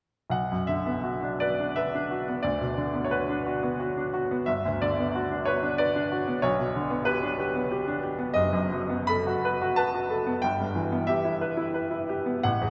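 A bright baby grand piano opens at 0.3 s, playing alone in a brooding, passionate romantic character piece in 3/4, moving with rubato at roughly 79-95 BPM in B minor before turning toward E minor at 8.4 s. Its up-front, short-sustained tone rings out into a vast, echoing cathedral space whose long, wet reverb surrounds every note. The harmony moves from Bm through Gmaj7 to B7/F# and Em/G, and the passage is cut from a longer piece, ending at 12.7 s.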